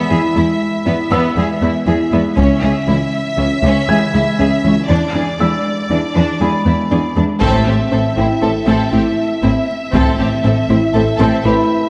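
Futuristic and relentless, this cinematic film-score passage blends orchestra with electronics at 119 BPM in a straight 5/4, cut from a longer piece. A round, tine-like synth pluck with chorus and delay spins arpeggios throughout, over a muted, intimate felt upright piano with audible action noise and its own delay in the background, while a distant, smooth violin section carries a second line and an intense cello section holds the bass through chords of E, C#m and E7. Close, dry taiko drums struck with heavy sticks break in briefly at 2.4 seconds. At 7.4 seconds the whole band hits an accent as the music turns to A minor: the taiko return, a lush, expressive studio violin section takes the melody on a high E with soft-attack vibrato, a focused viola section sits in the background, and a rich, even double bass section deepens the low end. The recording shares a wet scoring-stage reverb, and the overall sound is rounded off at the top.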